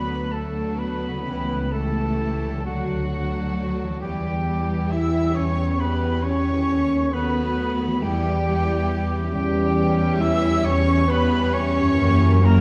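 An up-front, expressive double bass section anchors this solemn, yearning classical excerpt in a slow, rubato 6/8 at 45 BPM, its close bowed tone sitting beneath a very quiet, distant cello section and a smooth-topped chamber viola section playing accompaniment. A lush symphonic violin section carries the melody in the background, joined by second lines from an airy, crisp-attacked flute group, a clear chamber violin section, a punchy clarinet and a roomy oboe, while a mellow French horn section holds sustained chords and a very quiet concert harp rings out arpeggios. The harmony moves from D through Em and B7/D# to F#7b9 at 12.0 seconds, set in the wet reverb of a recital hall with a dark production.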